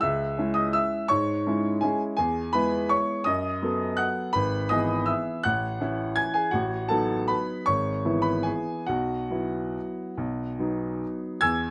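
Close, detailed microphones and a light reverb give this short excerpt an intimate, clear sound, with the solo baby grand piano placed up front. It is a classical piano waltz in 3/4, elegant and playful in mood, played with a supple rubato feel. The piano has an open tone and long sustain, and it ranges from G#1 up to G#6 across its 11.7 seconds. The harmony starts on C#m, passes through E, B7/F#, A and B7/A, and settles on Bsus4 at 8.9 seconds before resolving to B at 10.2 seconds. Cut from a longer piece, it ends poised on that chord, as if the phrase is about to continue.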